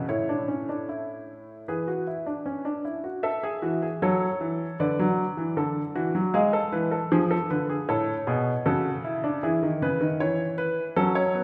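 A steady, straight 4/4 pulse at 78 BPM carries this lively, joyful baroque-style fugue in three parts, written in A major and cut from a longer piece. A solo baby grand piano plays throughout the 11.4 seconds, spanning A2 to E#5 with a warm, worn tone that still sounds present and up front. The opening passage rests on Esus4/A before moving to E5. At 3.2 s a second, longer stretch begins, moving through A, Bm7/D, G#dim7 and back to A before settling on E. A wet recital hall reverb surrounds the instrument, and the listener seems to hear it from further back in the room.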